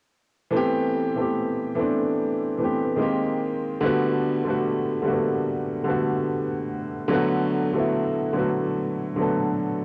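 A loose, gently swung groove at 73 BPM sets an unhurried hip hop pulse for this nostalgic, hazy cut from a longer piece in A dorian. A lone upright piano, woody, smooth and vintage in tone, sits up front as accompaniment from 0.5 to 9.8 seconds, moving through Am9, G#maj9, Gmaj9 and Bm7 in its low and middle register. Its cassette tape colour and low-pass filtering soften the edges, while light reverb and a small room ambience lend the home-recorded sound an intimate, worn character.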